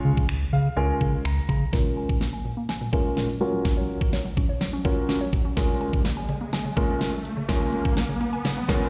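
A warm grand piano and a round, deep analog bass open this upbeat, summery dance-pop excerpt in Db major at 125 BPM, both pumping with sidechain compression. The bass drops out at 1.6 seconds, while the piano, polished and up front with short sustain, keeps accompanying through a low-pass filter, plate reverb and slapback echo, adding fills from 0.3 to 1.7 seconds and again at 8.5 seconds. A layered, electronic pop drum kit enters at 0.2 seconds with a knocking kick, fat snare, crisp hi-hats and finger snaps, and later plays a fill. From 1.7 seconds a woody, mallet-like FM synth pluck adds arpeggios with chorus, tape echo and its own pumping, as a filter sweep and build-up begin over chords moving from Db6 through Bbm7 and Gbmaj7 back to Db6. An electronic riser joins at 4.3 seconds to push the build forward, and the whole track carries the light reverb of a live gig heard through a venue's PA in a recital hall.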